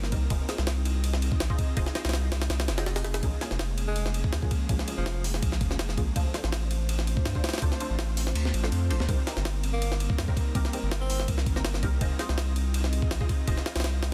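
Drum and bass in a jungle vein, this raw, dark fragment of a longer piece rides a compressed, sampler-style kit with a thumpy kick, medium-tuned snare, hi-hat and ride cymbal, pitched up and gritty, set up front in a small room ambience. A deep, saturated sine sub bass sits equally forward, its notes starting fast and holding long beneath a breathy, warbling pad whose detuned, vintage tone carries sustained chords moving from Fm7 through Bbm7, Dm7 and Cm7. In the background, a muted, filtered dub stab plucks short chords coloured by phaser, ensemble chorus and dub echo. A clear, close-miked tenor saxophone plays brief pop-style solo phrases with vibrato and scooped notes, entering first at 3.9 seconds and again at 9.7 seconds, trailed by dub echo. The kick drops out briefly at 8.4 seconds, and the whole mix is dense and heavily limited with very little reverb.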